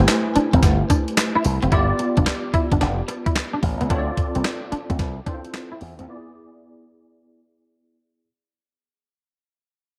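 New jack swing R&B at 110 BPM with a slick, punchy swing on the 16ths, where a crisp 8-bit drum machine's thumpy kick, fat snare, hi-hat, handclaps and tambourine sit up front beside an enveloped-filtered slap bass, a twangy clean electric guitar riff, a bell-like tine electric piano shimmering with chorus and a very quiet metallic cowbell. Across Am7, G7, Dm7 and E7, a filter sweep and fade-out run throughout in a dark, lightly reverberant mix. The cowbell drops out at 5.7 seconds, and everything else but the electric piano stops at 6.1 seconds for a short break.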